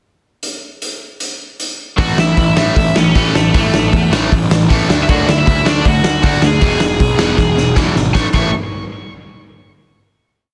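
A dense, heavily limited master with little reverb gives this short, rowdy punk rock piece a tight, in-your-face sound, driving along in a straight 4/4. A raw garage drum kit opens alone with a pickup bar, its punchy kick, medium-tuned snare, hi-hat and crash sitting up front in a gritty, saturated tone with a rolled-off top and a two-step groove. At 2.0 seconds the band crashes in over A, D and E: a cranked stack guitar and a very quiet, crunchy overdriven guitar both chug palm-muted eighth notes, while a growly fuzz bass pushes driving eighth notes underneath. On top, a dark, high-gain lead guitar with distortion and delay states a motif-based melody in sentence-like phrases, partly doubled in octaves. A drum fill leads into a final A5 chord at 8.1 seconds that closes the energetic piece.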